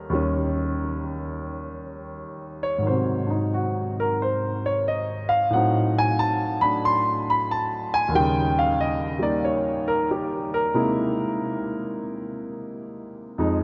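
Swinging eighth notes loosened by rubato at 90 BPM in 4/4 carry this playful solo jazz fragment in Eb mixolydian, where an up-front, natural-toned grand piano ranging from Eb2 to C6 plays alone for 13.6 seconds through a chord path of Eb7, Ab7, Adim7, Eb7 and C7alt, its warm sound bathed in a long, wet cathedral reverb that fills a church-like space.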